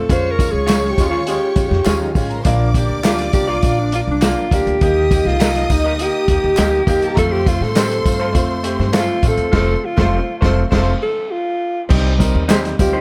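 Uptempo 1960s-style soul at 102 BPM, danceable and uplifting, this clip cut from a longer piece features a mellow, up-front alto saxophone soloing with vibrato over a clear baby grand piano with audible action noise, a woody pizzicato upright bass and a muffled, lo-fi vintage drum kit with a punchy kick and dark cymbals. A lush, bowed violin section carries a second line until 10.9 seconds, distant tambourine and handclaps sit in the background, and a slightly broken-up electric guitar with spring reverb adds background stabs from 0.7 seconds. A very quiet, tight horn section joins for band accents, notably from 9.5 seconds, as the chords move from Db through Bb, Eb and F before landing on Cm at 11.9 seconds, all set in light studio reverb.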